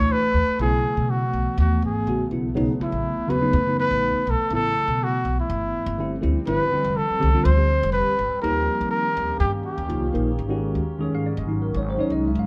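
A breathy, dusky trumpet carries the solo melody up front, colored by light vibrato, and falls silent at 10.1 seconds. This is a bright, slick jazz excerpt cut from a longer piece, moving at 123 BPM in a straight 4/4 feel, tuned to A4 = 445 Hz. Beneath the trumpet, a clean tine electric piano comps through its built-in speakers with a phaser. A detuned, morphing wavetable pad holds sustained chords with a slow attack, long release, phaser and its own reverb. An acoustic upright bass, plucked and woody on steel strings, sits up front as the low anchor. The harmony drifts through suspended dominant chords such as E7sus4, B9sus4 and G7sus4, touches D#7, and shifts to a new section at 10.4 seconds on Ab7sus4, all heard as a band playing live in one large studio with moderate reverb.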